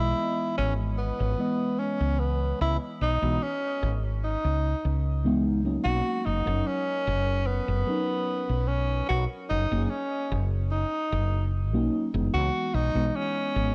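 A faded cassette-tape sound with light reverb and small-room ambience frames this dreamy vaporwave excerpt at 74 BPM in B major, drifting between C#m9 and Bmaj9. A breathy, close-miked tenor saxophone carries the jazz-style melody up front with scooped notes, 12-bit sampler grit and analog delay, over a mellow FM electric piano whose soft, full-bodied chords carry a faint noise layer, phaser and subtle chorus. Beneath them, a woody fretless electric bass sits round, dark and direct.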